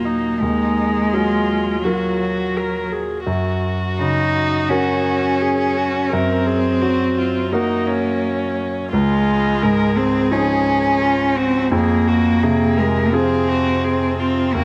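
Drenched in a wet spring reverb and carrying the patina of cassette tape, this neoclassical piece for piano and strings drifts in a longing, reflective rubato. Up front, a single cello carries the second line in a warm sul tasto voice with light vibrato, airy bow and soft attack. Beside it, an intimate, close viola with the same bowing and a clear concert grand with deep, natural bass provide accompaniment throughout the 14.6 seconds, as the harmony moves from Ebmadd9 through Gb and Dbadd9 to Fm.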